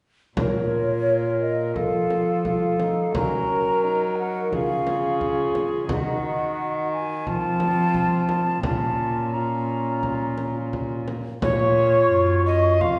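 A hollow, mellow silver concert flute with soft-attack vibrato carries the melody of this courtly yet rustic renaissance-style consort dance in Bb minor at 87 BPM, over an airy, close-miked tenor recorder whose tongued, chiffy straight tone forms a second line. A distant, clear trombone gives accompaniment while an up-front bowed cello with a nasal, reedy gut-string tone holds the bass, and a deep frame drum played with hard hands adds percussion to the straight 4/4 feel, all five entering together at 0.4 s. The wet recital-hall reverb and softened top end give this short cut from a longer piece a churchly glow as the chords move from Bbm through F, Gb, Db and Ebm before returning home.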